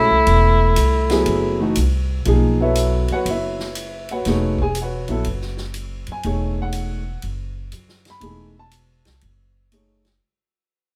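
A swung 4/4 groove at 121 BPM carries this cool, searching modal jazz fragment, cut from a longer piece, over a B7sus4 chord that shifts to B9sus4 at 2.3 s. A vintage-toned tenor saxophone with vibrato states the melody up front while a breathy, distant trombone adds a soft-edged second line, both stopping at 1.8 s. A dark, boxy upright piano with audible action noise and long sustain, a woody pizzicato upright bass and a big-band drum kit with a punchy kick entering at 0.3 s sit in light reverb and carry on as the music fades out from 2.3 s.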